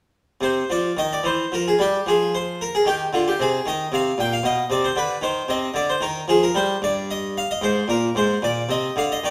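Flowing and introspective, this short fragment of a baroque-style suite movement in 6/8 has a solo harpsichord playing with free, rubato timing from 0.4 to 9.3 seconds. The Italian-style instrument sounds plucked, full and brilliant with its three sets of strings, moving through dark minor harmonies before a chordless passage near 6.8 seconds. It sits up front, with the reverb of a stone room lending a sense of distance.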